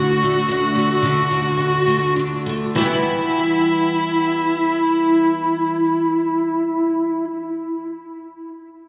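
Pop in a slow 6/8, this aching, melancholic excerpt is cut from a longer piece and captured live through a venue's PA in a lush recital hall reverb. A double-tracked, picked steel-string acoustic guitar sits up front with a woody, old-strings tone and a touch of slapback echo. It carries the accompaniment from the start until 7.4 seconds. Over it, a bluesy overdriven electric lead guitar, dark and distorted, sings a narrow melody shaded by slapback and tape echo. The opening passage slows down over a D chord before the music settles onto E minor at 2.8 seconds, where the second section begins.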